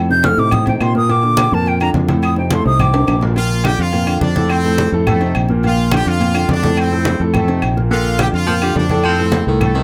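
A warm concert grand piano and a round, punchy fingered electric bass open this joyful, danceable salsa excerpt at 211 BPM in Bb major, soon joined by damped, low-tuned congas, ringing agogo bells and timbales, and woody claves in the background, while an airy silver flute with vibrato and a crisp attack carries the melody up front until 3.2 seconds, capped by a drum fill. A brilliant trumpet section takes over the lead at 3.4 seconds over chords alternating between F7 and Bb, and a clear, distant baritone saxophone adds a second line from 7.9 seconds, all in light reverb.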